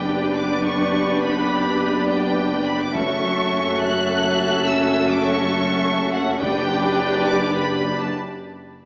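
Sustained strings and horns open together on a dark G/F# chord, setting a relentless, epic film-score mood in a straight 3/4. High violins carry the melody between F#5 and F#6 with a focused, lush vibrato, while a second violin line sits more distant beneath them and the violas fill in smooth, even accompaniment. Mellow French horns, close-miked with light vibrato, hold sustained chords through the middle, and bowed cellos and double basses anchor the low end on a single deep F#, the cellos tucked into the background. At 3.0 s the harmony shifts to F#m7 and a distant taiko ensemble enters with hard sticks in a large room; the G/F# chord returns at 6.4 s, and the drumming continues until 7.5 s. The orchestra sits in a wet scoring-stage reverb with a small-speaker sound, and the strings and horns stop at about 8.2 s, leaving a brief break at the end of this fragment cut from a longer piece.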